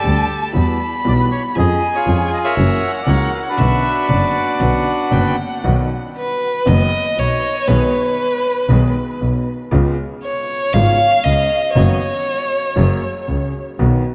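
A dark, reedy bandoneon opens this dramatic tango fragment up front, carrying the melody over a woody, polished upright piano, a bowed double bass with a smooth top, and a rich, bowed violin playing a second line through an analog delay. The tempo sits around 118 BPM in 4/4, but the feel is rubato and tense, with the music beginning in B minor. The violin sings with vibrato, soft attacks and expressive portamento, and the bass shares that vibrato and gliding expressiveness underneath. After the bandoneon drops out at 5.4 seconds, the piece turns to B major at 5.6 seconds and the violin takes over as soloist, supported by the present piano and the double bass. The violin finishes at 13.2 seconds, leaving piano and bass to close the passage. The whole mix is dreamy and soaked in a long church reverb, its top end softened.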